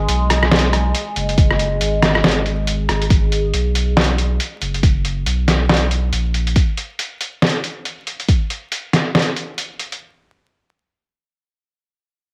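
A crackling cassette-and-vinyl sound with light digital ambience frames this heavy, dark deep dubstep excerpt, swung and in half-time. A resonant sawtooth-and-sine drone with moving overtones, chorus and phaser holds a G#m chord until 3.2 seconds, while a thick, saturated sine sub bass sits up front until 6.5 seconds. A gritty, pitched-down, sampler-style kit of hi-hat, rim click and medium-tuned snare runs throughout, joined from 1.4 seconds by a deep, layered electronic kick.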